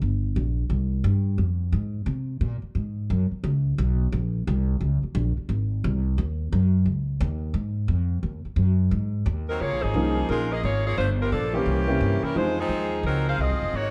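A swinging, joyful slice of big band jazz, cut from a longer piece, rides a firm swing feel in 4/4. The upright bass carries the opening alone from 0.0 seconds, its pizzicato steel strings sounding woody and thumpy, up front in the mix. At 9.5 seconds a bright saxophone section enters with the melody, a smooth-topped jazz ensemble sound placed forward. Just after, at 9.9 seconds, a warm baby grand piano joins in a present accompanying role as the harmony turns through jazzy sevenths and added-note chords. A moderate recital hall reverb frames the dark production.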